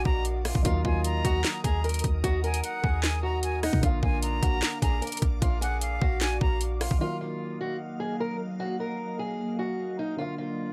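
A half-time trap groove at 151 BPM in 4/4 drives this hard-hitting, melancholic hip hop passage in Eb harmonic minor, cut from a longer piece. The overdriven electronic kit sits up front, with a hard-clipped kick, sharp snare, metallic hi-hats, handclaps and rim clicks, while a clean, boomy sine 808 bass with a fast attack and decaying tail anchors the low end. The melody comes from a picked old ladder-braced acoustic guitar, boxy and dark behind a low-pass filter, with audible finger squeak. A breathy, close-miked silver flute plays an expressive second line high above it through tape echo until 6.6 s. Underneath, a mellow concert grand piano, also low-pass filtered, gives deep-bassed accompaniment, and a glassy, ethereal FM pad holds slow-attack chords with ensemble chorus and its own reverb. When the drums and 808 stop at 7.0 s, the guitar, piano and pad carry on over an Ebmadd9 chord that moves to Bb at 10.2 s, all within a dry, gritty hardware sound.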